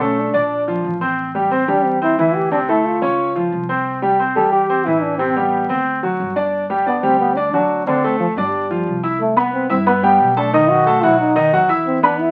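Heard through the crackle of a very old 78 rpm record, this short Afro-Cuban jazz passage sits in a wet studio reverb that gives the players a bit of room around them. The mood is sophisticated and sunny, with a straight feel in 4/4, and the piece is cut from a longer performance. A mellow, close-miked trombone carries the melody throughout in a jazz style, colored by a light vibrato. Beside it, a bright grand piano sits up front with a brilliant, natural tone, supplying the accompaniment across a broad span of the keyboard. A woody acoustic upright bass, plucked on steel strings, holds the low end quietly beneath them. The harmony moves through colorful changes such as Bm7, Bbadd9, Am9 and D7 before shifting into a new passage at 9.2 s that settles on Cmaj7 and then B7.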